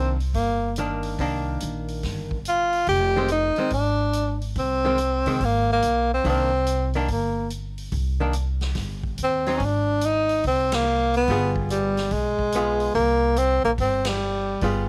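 A clear, up-front tenor saxophone sings a cool, smoky minor-key melody with vibrato and scooped notes over dark, hollow-body archtop guitar chords and woody pizzicato upright bass, while a softer swinging drum kit with a punchy kick carries this small-group swing-and-bop excerpt through a small room's ambience to band accents at 10.7 and 14.0 seconds.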